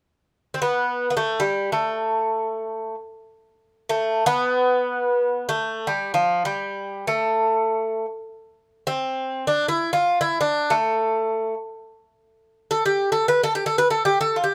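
In free time, this Turkish excerpt in makam uşşak on A, tuned to A4 = 444 Hz, carries a longing, soulful mood. A solo acoustic Greek bouzouki plays up front from 0.5 to 14.5 seconds, its picked double strings giving a metallic ring, with some strings doubled at the octave, across a range from F3 to B4-30c. A moderate studio reverb adds a modest sense of space around the instrument.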